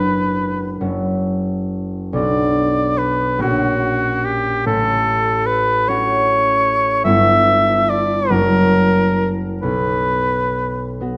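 In a rubato 6/8 pulse of roughly 43-52 dotted-quarter beats per minute, this melancholic, yearning romantic classical duo, cut from a longer piece and tuned to A4 = 443 Hz, sets a warm oboe melody with light vibrato, placed up front between F#4 and E5, over a ringing, thumb-plucked concert harp accompaniment spanning F#1 to F#4, moving from Bm/F# through F#/A#, Em/G and F#7 to a bare B5 as the oboe stops at 11.0 seconds and the harp at 11.2, the pair captured with close, detailed microphones in a moderate scoring-stage reverb.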